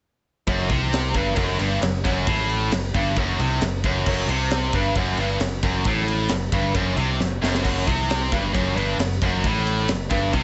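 Heavy metal at 134 BPM in a straight 4/4, relentless and aggressive, this excerpt is cut from a longer piece and sits on an F#m chord, tuned slightly below standard pitch. A tight, double-tracked distorted guitar plays the riff up front from 0.5 to 10.4 seconds, its tone bright and picked in a low register. Beneath it, a modern picked electric bass adds a growly, punchy low end with a direct sound. A tight acoustic metal kit of kick, snare, crash and ride drives the music in a pumping studio room, with a high-tuned snare, bright cymbals and a saturated, gritty edge, and a drum fill lands at 7.2 seconds. The whole passage is captured in a small room ambience with a dark top end.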